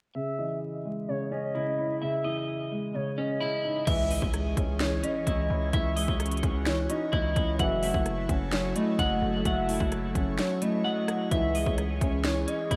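Menacing and eerie, this half-time trap cut in C# minor moves at 129 BPM, opening with a dark, picked clean electric guitar playing arpeggios through analog chorus, a low-pass filter and diffuse ambient delay, joined by a gliding sine lead with vibrato and portamento and a thick-felt upright piano whose audible action noise sits under lush chorus. A filter sweep runs through this opening until 3.9 seconds, when the hard-clipped trap kit, with its sharp snare, crisp hats, crash and rim click, arrives up front with overdrive alongside a heavy, distorted 808-style bass. At the same moment a breathy, detuned pad enters with slow-attack chords treated by phaser, and a very quiet electronic impact sounds until 5.7 seconds. A tight brass section with light vibrato adds short background stabs in a low register as the harmony shifts from C#madd9 to F#m7 and back. The kick drops out briefly around 10.4 seconds, and the whole dreamy mix is soaked in plate reverb and vinyl crackle.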